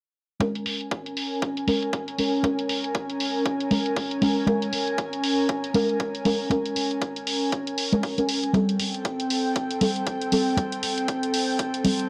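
This hypnotic, smooth deep house excerpt moves with a gentle swing on the sixteenths, and all four parts enter together at 0.4 seconds. Deep, mellow chord stabs sit up front, with a dark, detuned, wave-folded tone, a fast attack and decaying tails, thickened by chorus and echoed by digital delay. Alongside them, an airy, breathy pad, also up front, holds full-bodied sustained chords with a slow attack, a long release, a noise layer and ring modulation, also touched by chorus. Both the stabs and the pad pump with sidechain compression, and the harmony shifts from the opening minor-seventh chord to a new one at 8.5 seconds. A dry, analog-sounding electronic hi-hat and a punchy, layered, tape-tinged kick drum keep the groove, each with a hint of small-room ambience, until the kick drops out at 11.7 seconds. A moderate plate reverb gives the mix a soft sheen.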